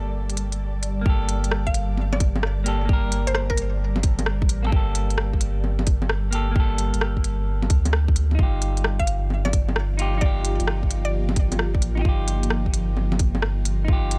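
A dry excerpt of melancholic, nocturnal future garage with a swung 4/4 feel opens on a very quiet, glassy texture of drifting overtones that lasts only until 1.1 s, while a deep sine sub bass, a clean, fingered hollow-body electric guitar with tape echo, and an ethereal, airy pad in the background carrying chorus, phaser and its own reverb all pump against the sidechain; a tight, up-front electronic kick joins at that moment beneath smooth hi-hats, bongos and rim clicks, and a woody, bright FM mallet-like pluck with chorus and tape echo carries the melody in two short phrases starting at 1.7 s and 9.0 s.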